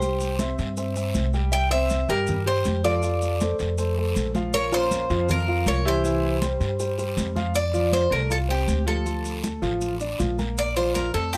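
A straight 4/4 groove at 159 BPM drives this relaxed, danceable fragment of Cuban son and guajira in F major, cut from a longer piece. Soft-handed, high-tuned congas with a thick-skinned tone sit in the background beside grainy, mellow maracas, while a raspy guiro sounds close. Up front, a woody, thumpy upright bass on gut strings plays pizzicato, and a bright, metallic Cuban tres picks the melody on its doubled strings, some of them sounding in octaves. A dark, smooth, vintage baby grand piano rolls out long-sustaining arpeggios underneath, and a fingerpicked classical nylon-string guitar adds a second line in the background until it drops out at 7.3 s. From 7.5 s a new section moves through Fadd9, Dm and Bb5 chords, all captured with close, detailed microphones and a light reverb.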